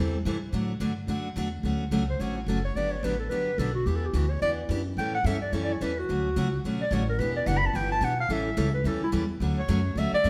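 Lively and playful, this short cut from a longer piece is acoustic string swing in the jazz manouche style, with a swung feel in 4/4. A picked steel-string acoustic guitar supplies bright, concert-style accompaniment with fresh strings and the occasional finger squeak, while a pizzicato upright bass with gut strings gives a woody, dark and thumpy foundation; both play from the opening moment and sit up front. At 2.1 seconds a breathy, close-miked clarinet enters and takes a jazz-style solo, its subtone, vibrato and scooped notes giving the melody a warm, intimate character. Underneath, the harmony moves through a classic turnaround of Dmaj7, Gmaj7, Em7 and A7 chords before settling back on Dmaj7. The trio sounds like a band playing live together in one room, wrapped in a wet stone-room reverb.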